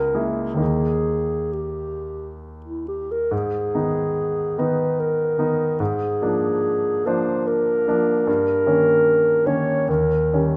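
A moderate recital-hall reverb surrounds this short romantic classical duo, cut from a longer piece, giving the clarinet and grand piano a natural sense of space. The clarinet carries the melody up front with a dark, smooth tone, singing in a yearning, melancholic voice between E4 and C#5. Beneath it, the concert grand piano supplies a bright, brilliant accompaniment with deep bass reaching down to C#2 and a polished, present sound whose notes decay quickly. The music moves in a flexible rubato 3/4 at roughly 65-77 BPM, its harmony passing from A#m7b5/C# through G#m and A#7/G# before settling on D#7 near 9.9 seconds. Both instruments play throughout the roughly 10.6-second passage, which forms a single sorrowful section.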